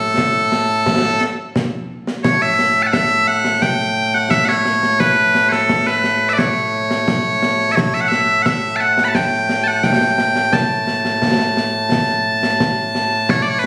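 This stirring, ceremonial piece of Scottish traditional pipe music moves at 87 BPM in a straight 4/4, set in A mixolydian. Loud bagpipes carry the melody from the very start, their bright, piercing tone sounding as a continuous solo line spanning A2 to B5, placed up front with a slapback echo. At 0.2 seconds a concert snare drum and concert bass drum join, close-miked and acoustic, with dark cymbals beneath the pipes. A short opening passage gives way at 2.2 seconds to a longer section that runs to 13.3 seconds. The room adds a moderate scoring-stage reverb, and the recording, captured on a phone in the room, has a loud overall level. This is a short cut from a longer performance.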